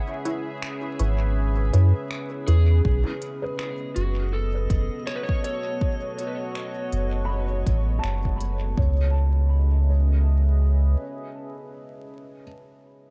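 A round, up-front soft sub bass anchors this spacious, meditative ambient dub excerpt in C# minor at 81 BPM, in 4/4 with a swung feel, beneath a dark detuned pad that moves from C#m7 to B9 and back, a slightly broken-up slide guitar melody with tape echo, muted phaser-tinged chord stabs at the opening, smooth tape-warm finger snaps and hi-hat drenched in dub echo, an overdriven deep house kick and toms arriving at 2.8 seconds, a faint glassy harmonics texture in the background, and boxy felt-muted upright piano arpeggios that enter at 3.4 seconds and carry a filter sweep, inside a dry, echo-heavy mix with vinyl crackle.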